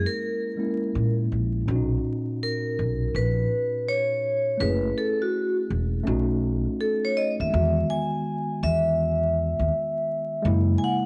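A bright, metallic vibraphone played with hard mallets and a slow motor vibrato carries the melody and solos from 1.7 seconds in this cool, relaxed jazz-hop cut from a longer piece, moving at 82 BPM in B major with a swung 16th-note feel over a worn, slightly out-of-tune tine electric piano with a cassette tape colour and a woody, thumpy pizzicato upright bass on gut strings that drops out at 10.7 seconds, the whole track sitting in studio reverb with a lo-fi home-cassette sound and vinyl crackle.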